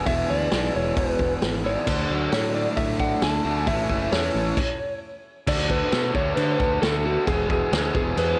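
A big arena sound with lush hall reverb frames this brief, driving and brooding slice of classic rock, cut from a longer piece and moving at 133 BPM in a straight 4/4. An electric slide guitar carries the melody with a bright, slightly broken-up, compressed tone and analog delay, while a crunchy overdriven guitar sits up front with the riff, its picked lines touched by slapback echo. Beneath them, a fuzz picked electric bass adds punchy, overdriven grit, and a vintage drum kit supplies kick, snare, hi-hat and crash with dark cymbals and a rolled-off top. A second, biting overdriven guitar joins the riff in the background at 1.9 s as the chords move from E through Dadd9 to A, and a stop arrives at 4.6 s. The music then pushes into a new section at 5.5 s, shifting from D back to E.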